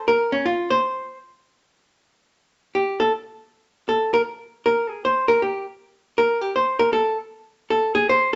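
A lone archtop guitar, miked and amplified, opens this short jazz fragment and plays by itself for its full 8.4 seconds, swinging at 157 BPM in 4/4 with a sophisticated, swinging feel. Its tone is dark, clean and hollow-bodied, picked in the middle register from Db4 to C5 and set up front. A moderate studio reverb adds gentle space, while the highs stay rolled off, giving the sound a mellow, rounded edge.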